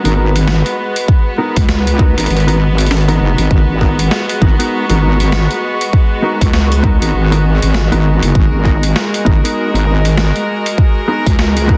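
Glitch hop with a swaggering, gritty stance, this piece rides a swung sixteenth-note feel over a single G#m7 chord. A heavy, detuned wobble bass sits up front, its square-and-sine tone saturated through tube warmth and thickened with chorus, while a punchy, layered electronic kick arrives at 1.1 seconds to anchor the low end. A sampler-style boom bap kit adds hi-hat, rim click and a high-tuned snare with a gritty, roomy character. Above, a bright chamber string section holds bowed chords with light vibrato, and a dark, clean electric guitar plays fingered stabs shaped by a low-pass filter, digital delay and vintage 12-bit sampler grit; both breathe with sidechain pumping. A warbling, nostalgic lo-fi pad drifts in the background with chorus, reverb and the same pumping, all sealed in a dense, heavily limited master dusted with vinyl crackle.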